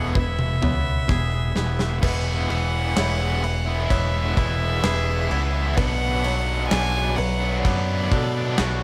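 This cinematic, soaring post-rock excerpt at 64 BPM in 4/4 opens on an E chord. A rich, floating violin carries the melody, bowed sul tasto with a soft attack by a single player, over a fuzz-laden picked bass that sits up front. A bright, double-tracked overdriven guitar plays a riff with tremolo, while a twangy clean guitar and a mellow, intimate felt-muted upright piano add arpeggios in the background; both share the slapback echo that also colours the violin. The big rock drum kit enters at 0.2 seconds, and the opening two seconds form a build-up that ends in a drum fill, with the full band continuing from 2.0 seconds. The kit sounds mid-forward and big-roomed, with a tight kick, medium-tuned snare and rolled-off top, as the harmony shifts to B minor at 5.8 seconds, all set in a small room ambience.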